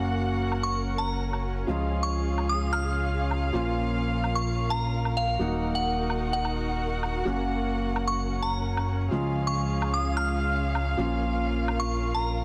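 A dense, heavily limited modern master with a light, small-room reverb frames this short cut from a festival progressive house track in F# major, moving at a straight 129 BPM in 4/4 with a triumphant, anthemic mood. A fat, detuned sawtooth analog bass sits up front from the start, thick and sustained beneath a felt-muted upright piano whose soft, intimate accompaniment carries a touch of delay. Behind them, a muted chamber string section bowed con sordino holds dark, veiled chords with vibrato. Electronic hi-hat, shaker and woodblock enter at 0.1 seconds, layered and low-pass filtered so they stay in the background. At 0.6 seconds a glassy, crystalline FM synth bell takes the melody, its bright, warbling vintage tone shaped by chorus, tremolo and tape echo. The harmony cycles through F#, C#, A#m and D#m, giving the passage its uplifting, stadium-ready lift.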